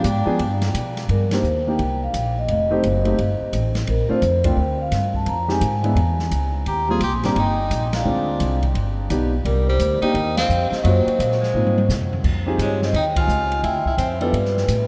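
A vibraphone played with soft mallets carries the melody in this cool, swinging jazz excerpt, its ringing, mellow tone heard close and full with the motor off. It sits in a small-group swing and bop setting in C minor at 172 BPM, with upright bass, clear grand piano and an open jazz drum kit playing from the start. The pizzicato bass is woody and thumpy, up front in the mix. The piano's intimate comping carries audible action noise, and the drums bring dark cymbals, a medium-tuned snare and a boomy kick. A bright tenor saxophone adds a second line with vibrato and scooped notes, briefly at the opening and then again from 6.7 seconds, while the band hits accents through the passage and the drums fill from 11.5 to 12.2 seconds. The whole performance sits in a vast, echoing space with a long cathedral reverb, and the harmony moves through rich colors such as F#maj7#11 and Dbmaj9#11 before the fragment cuts off.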